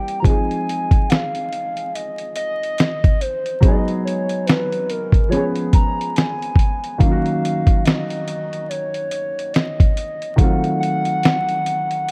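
A gritty, overdriven, sampler-style soul drum kit with a thumpy kick sits up front in this reflective, nostalgic lo-fi hip hop excerpt at 71 BPM with swung 16ths, alongside a woody upright piano and a warbling, detuned synth lead with chorus and vibrato, all set in a dark production with vinyl crackle and light reverb as the chords move from Fm7 through Abm7, Db7 and Gb6 to F7b9.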